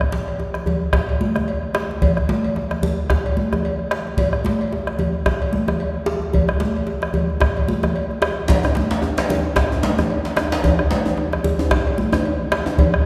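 A swung sixteenth-note groove in 4/4 at 111 BPM drives this earthy, powerful West African drum ensemble, heard as a short cut from a longer piece. A round, close bombo sits up front and anchors the bottom, while a tight djembe adds cracking accents and hard-handed, high-tuned congas bring a thick-skinned, damped tone. A metallic, vintage-sounding cowbell rides lower in the mix with a band-limited edge. At 8.5 s a second, medium-tuned djembe with metal rattles joins for the closing passage, struck hard and placed up front yet carrying a distant, large-room character. The whole ensemble is bathed in the long, wet reverb of a church or concert hall, which lends the acoustic drums a spacious, resonant sound.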